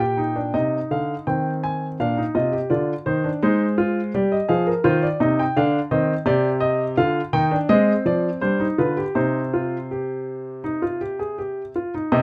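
Serious and contemplative, this baroque-style three-part fugue for solo grand piano moves at a measured, straight pace in 4/4, drifting from a major-key opening into a minor-key close by 6.3 seconds. The piano sounds intimate and natural, placed up front with its mechanical action audible, spanning Bb2 to Ab5 within a moderate studio ambience. Cut from a longer work, the passage settles onto a G7 before resolving to C minor at 9.2 seconds.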